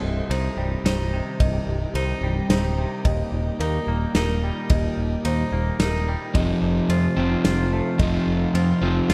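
An overdriven semi-hollow guitar, dark and up front, enters at 6.3 seconds with a picked riff in this brooding, melancholic post-rock excerpt in 3/4. Beneath it, a twangy, scooped electric guitar plays clean, fingered arpeggios through spring reverb, slapback echo and analog delay. A felt-muted upright piano adds soft, mellow, intimate arpeggios in the background, with its own slapback echo and analog delay. An organ-like pad of pure sine tones holds sustained chords with a slow attack, long release, ensemble chorus and built-in reverb, also set back in the mix. A bright, direct picked electric bass sits up front, and a loose indie drum kit with a tight kick, medium-tuned snare and ride cymbal joins at 0.3 seconds. The harmony moves from Cm to Eb to F7, all framed by a moderate recital hall reverb and small room ambience that give the recording a big arena sound.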